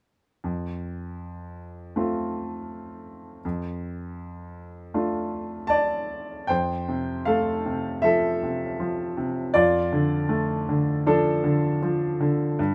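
The recording has a light reverb around a solo grand piano that sits up front, its tone clear and boxy with a short sustain. This is a lyrical classical piece for piano alone, peaceful and tender in mood, cut from a longer work. Set in 4/4 with a rubato feel, the playing moves freely in time and spans from F2 up to A5. The harmony alternates gently between F and Dm/F, and the pattern returns when a second section begins at 6.5 seconds. The piano plays from 0.4 seconds to 12.7 seconds, keeping its peaceful, tender character throughout.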